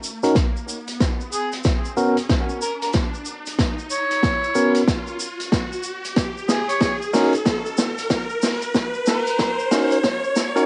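Swung sixteenths at 93 BPM in 4/4 drive this playful, gritty glitch hop passage in Eb minor, cut from a longer track, with a punchy, layered electronic kick sitting up front beside a vintage kit whose medium-tuned snare and hi-hat sound mid-forward and rolled-off, playing a drum fill throughout. A grainy tube shaker from a live room ticks along quietly beneath, while an electronic riser runs across the whole build-up. A bright, clean tine electric piano plays up-front stabs between B3 and Bb4, roughened by 12-bit sampler grit, cassette tape and tape echo, pumping against the sidechain as a low-pass filter sweeps over it. From 1.3 s to 9.7 s a mellow, distant harmonica carries a solo, classical-style melody between Ab4 and C#5, roomy and tape-echoed with the same sampler crunch. The harmony moves from Ebm7 to Bsus2 and back to Ebm7 at 6.2 s, all set in a small room with a home-cassette sound, vinyl crackle and a dull, capped top end.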